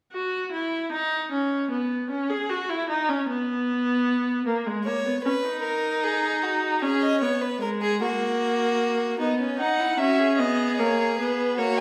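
A clear, focused viola opens this baroque-style fugue for string quartet at 0.1 seconds, carrying the accompaniment alone with a bowed, vibrato tone. At 4.8 seconds a second violin joins close and up front, smooth and even, as the harmony moves through chords such as G#madd11, F# and C#5. A rich violin enters with the melody at 9.6 seconds, sounding distant yet expressive, with vibrato and portamento. Set in B major at 50 BPM in a straight 6/8, the piece has an elegant, joyful mood. A recital hall reverb with a 1.4-second decay surrounds the players, and this passage is cut from a longer piece.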